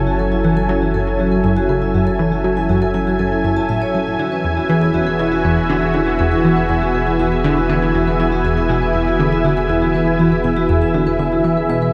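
Ambient, sequencer-driven space music cut from a longer piece, hypnotic and expansive, in which a lush, warbling unison pad with chorus holds sustained chords up front, a metallic, ringing vibraphone struck with medium hard mallets plays delayed arpeggios, a tight, driving sequenced synth with chorus, phaser, delay and cassette-tape colour repeats a riff, and a round sine sub bass carries the low end, the whole heard through a vast, echoing cathedral reverb.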